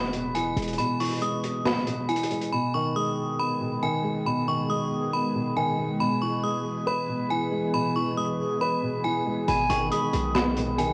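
A crunchy, gritty breakbeat kit of handclaps, hi-hat and a medium-tuned snare, saturated with 12-bit sampler grit, drives this melancholic, hard-hitting half-time trap groove at 138 BPM in G# minor, with a punchy, heavy 808-style bass hitting underneath. The bass falls away at 0.8 seconds and the drums at 2.5 seconds, leaving a ringing, inharmonic FM bell melody with chorus and tape echo over a soft, boxy felt-muted upright piano whose action noise sits intimately up front, while an ethereal, warbling detuned pad drifts in behind them at 3.2 seconds. Drums and bass return at 9.5 seconds, joined by a brief, airy straight-tone silver flute line, all wrapped in a small-room, lo-fi cassette haze.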